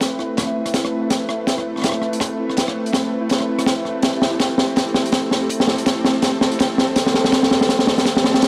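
A tense, dark half-time drum and bass passage at 164 BPM in A minor opens with everything at once: an up-front acoustic jazz kit with a high-tuned snare, rim clicks and swung hi-hats plays a drum fill across the whole build-up, over a thumpy, pitched-down sampler kick sitting low in the mix. Behind it, a bright, detuned string-like drone sustains an Amadd9 chord with vibrato, 12-bit grit and sidechain pumping, while a mellow, chorused triangle texture pulses in time. The sound is dry and gritty, with small-room ambience, transformer saturation and cassette tape colour, in a short cut from a longer piece lasting 8.5 seconds.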